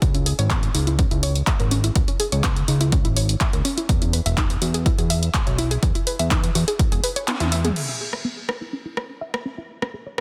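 A dense, heavily limited mix with light reverb carries this dark, dramatic melodic techno cut at 124 BPM in C# minor. A punchy, tape-tinged electronic kick and an overdriven, up-front deep house kit of hats, claps, rim clicks, toms and crash, its hats, toms and crash pumping, sit beneath a fat, wave-folded sawtooth bass moving from C#m to E. A warbling, lo-fi, nasal pluck arpeggio with chorus and digital delay runs throughout. The kick drops out for a drum fill at 7.3 seconds, and once the bass stops, a filter sweep on the arpeggio takes over from 7.8 seconds.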